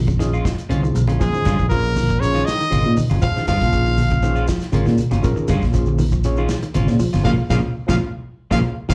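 A straight, funky afrobeat groove in 4/4 drives this intense excerpt, built on an up-front fingered electric bass, a warm soul drum kit with a tight kick and a rolled-off top, and background shekere and low-tuned congas, with a bright semi-hollow guitar playing arpeggios, a clean electric guitar adding stabs, and a gritty, overdriven reed electric piano with fast tremolo filling the chords over a single Bbm7. At 1.2 seconds a brilliant, forceful trumpet takes the lead, backed very quietly by a clear trombone with vibrato and a veiled, cup-muted trombone section. The band hits a shared accent from 7.3 seconds and a drum fill closes the passage, all heard as a live club gig through the venue's PA with light reverb.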